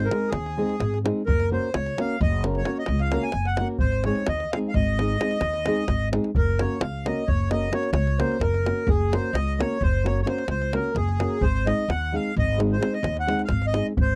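Balkan folk in the manner of a wedding band, this short excerpt races along in an asymmetric 11/8 with a straight feel and a virtuosic, wild energy. The accordion carries the melody up front, its tone reedy, dark and smooth with a slow beating in the reeds. Beside it, a classical nylon-string guitar provides thumb-plucked accompaniment, acoustic and warm, with finger squeaks audible on the strings. Underneath, a pizzicato upright bass fitted with steel strings sounds woody, bright and growly. A davul drives the percussion with a tight, close and dry attack. The dry, intimate 1970s-style studio sound carries just a light touch of reverb, and the music moves into a new section at 6.3 seconds, running on until the cut at 14.2 seconds.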